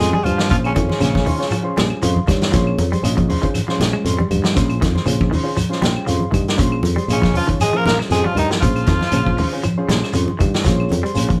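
Afrobeat at 118 BPM in Bb dorian, intense and hypnotic, with a gritty, growling tenor saxophone carrying the melody alongside a brilliant trombone and a veiled, cup-muted trombone section on the second line, the horns sounding from 0.0 to 1.7 and again from 7.1 to 9.6 seconds. Underneath, a reedy electric piano with fast tremolo accompanies and adds fills, a bright picked electric guitar plays arpeggios, a dark fingered guitar with spring reverb adds stabs, and a punchy, foam-muted fingered bass holds down a Bbm9 groove. A vintage drum kit with a tight kick and rolled-off top sits up front, with low-tuned congas, a grainy shekere and woody claves in the background, all captured as a band playing live in one room with a wet studio reverb in this short excerpt.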